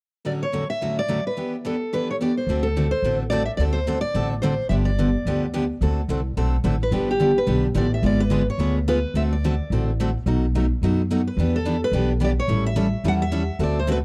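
A warm, picked steel-string acoustic guitar opens the accompaniment at 0.2 s, joined a moment later by a bright, fresh-stringed second guitar carrying a charming, playful melody with audible finger squeak, before a woody, thumpy pizzicato upright bass enters at 2.5 s, all in a lively 216 BPM swinging jazz manouche in D mixolydian that moves through D7, G7 and G#dim7 toward B7, Em7 and A7, captured as a dry, close 1970s-style studio recording with small room reverb in this fragment of a longer piece.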